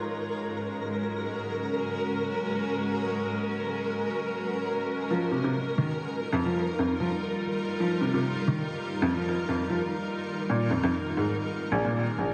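Swung sixteenths in 4/4 give this glitchy, playful IDM excerpt its lilt, as a cloudy, detuned granular pad holds sustained chords through Ab9sus4, F9sus4 and Bb9sus4 alongside a flickering, grainy triangle texture, each carrying its own built-in reverb, and at 5.1 seconds a soft, felt-muted upright piano joins them up front with low, mellow arpeggios trailed by digital delay, all set within a wet echo chamber.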